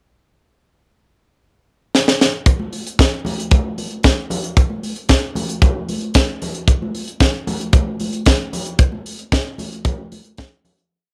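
A tight, up-front funk drum kit with a high-tuned snare and a tight kick drum drives this glamorous disco piece at 114 BPM, opening with a fill at 1.9 seconds into a four-on-the-floor beat with open hi-hats on the off-beats, while distant, ringing congas played with soft hands add a syncopated groove from 2.5 seconds in a dry, cassette-recorded home sound that fades out from 8.8 seconds.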